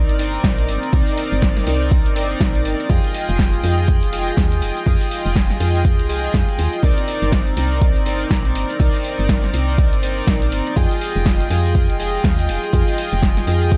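This deep house cut, taken from a longer piece, has a smooth, late-night mood and a swung sixteenth-note groove. Glossy, retro polysynth stabs sit up front, their chorused pulse and sawtooth tones carrying a filter sweep, a touch of ring modulation and a sub octave, while dub echo trails each hit and sidechain pumping makes them breathe. Underneath, a woody, round FM bass with a soft, dark decay pumps along with the stabs as the harmony moves between Cm9 and Fm9. The drum kit enters at 0.1 s with hi-hat, shaker and a punchy snare, and a deep, overdriven electronic kick joins at 0.4 s, both drum parts having a gritty, small-room character. A digital ambience with a dulled top end surrounds the mix.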